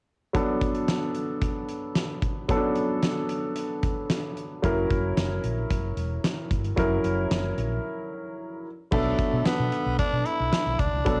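1980s-style pop with a nostalgic, dramatic mood, heard as a short cut from a longer piece with the character of a home cassette recording in light reverb. A clear, present grand piano sits up front from the start, carrying the chords with cassette tape colour and plate reverb. A huge arena drum kit plays alongside it in a big room, with bright cymbals, a fat snare and a punchy kick pushed forward. At 4.6 seconds a dark, round fretless electric bass joins, its woody, amped hollow-body tone softened by lush chorus as the harmony moves from Bm7 to F#7. After a brief break, a raspy, gritty tenor saxophone takes the solo melody at 8.9 seconds, edgy and full of vibrato, with the same tape colour and plate reverb as the piano.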